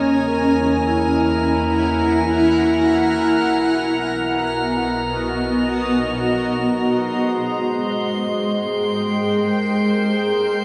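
Warm and weightless, this ambient passage, cut from a longer piece, floats in free time inside a cathedral-like reverb with a cassette-tape grain. An up-front granular cloud pad holds blurred, full-bodied sustained chords throughout, moving from Eadd9 to B and then Abmaj9. Above it, a bright, glassy texture of drifting overtones hovers calmly with chorus. A vibraphone played with medium mallets and its motor off fades in with metallic, ringing arpeggios through tape echo, stopping at 3.5 seconds, while beneath it a focused, clear chamber double bass section bows with vibrato and fades out by 6.8 seconds. From 7.5 seconds a resonant drone with sweeping overtones settles in the background, its chorus and reverb filling out the closing section.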